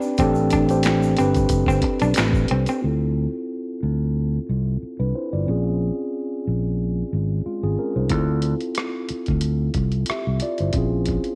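A mellow, clean tine electric piano opens this sultry, soulful neo-soul R&B excerpt at 91 BPM alongside a distant egg shaker and finger snaps, joined at 0.2 s by a punchy, up-front fingered electric bass, a slightly broken-up, lo-fi electric guitar through a small old amp, and a gritty boom bap sampler-style drum kit with a thumpy kick and high-tuned snare, before the shaker, guitar and drums stop at 2.8 s, leaving the filter-swept piano and bass over Dm9 and Bbm9 chords until the drums return at 8.1 s, all in light reverb.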